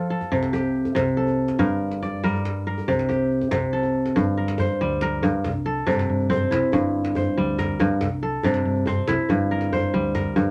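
Hypnotic and reflective, this excerpt of West African string and xylophone music moves at 94 BPM in 12/8, settling into G dorian as the harmony rocks between G minor and C, with a shift in the pattern at 4.2 seconds. Up front, a crisp, ringing, fingerpicked kora spins arpeggios throughout, while a round, dark hollow-body short-scale fingered electric bass sits low and amped beneath it. A tight, cracking djembe, played with hard hands and carrying metal rattles, adds a compressed, saturated edge, all set in a light reverb.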